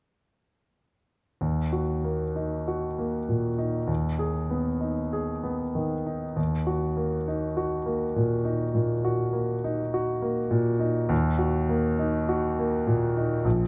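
In a slow, rubato 4/4 at 47-52 BPM, this wistful, melancholic excerpt from a romantic classical nocturne in Eb minor features a solo concert grand piano, natural and up front with deep bass, playing from 1.4 to 13.7 seconds over Ebm, Abm/Eb and back to Ebm, tuned to A4 = 441 Hz and captured by close, detailed microphones in light reverb.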